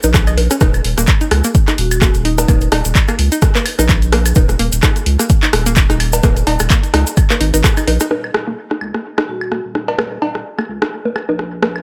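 A swung 4/4 pulse at 128 BPM in Eb minor drives this quirky, sparse minimal techno excerpt, with a punchy, tape-warm electronic kick up front, analog drum-machine handclaps and hi-hat, and a grainy acoustic cabasa all running until the kick drops out at 7.7 seconds and the others at 8.1 seconds. A deep, saturated sine sub bass and a hollow, bouncy square-wave pluck riff both pump with sidechain compression, the pluck carrying chorus and dub echo, while layered electronic bongos, rim click, woodblock and cowbell ring out in a large room with their own dub echo. A mellow, metallic vibraphone played with soft mallets sits in the background for brief touches at 1.8 seconds and again near the end, and the mix stays dry and close throughout.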